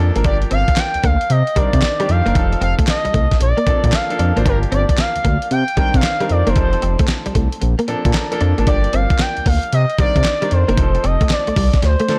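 A swung sixteenth-note groove in 4/4 drives this confident, punchy new jack swing excerpt. A gritty sampler-style drum kit of thumpy kick, fat snare, hi-hat and handclaps enters at 0.2 seconds over a smooth, saturated synth bass up front, while a clean, direct-recorded electric guitar riff with ensemble chorus and a brilliant, polished grand piano cycle through Gm7, Cm9, F7 and Bbmaj7, the piano taking a fill at 7.9 seconds. An expressive portamento lead with vibrato, chorus and delay carries the melody from 0.3 seconds, set in a dark digital ambience before a drum fill closes the cut.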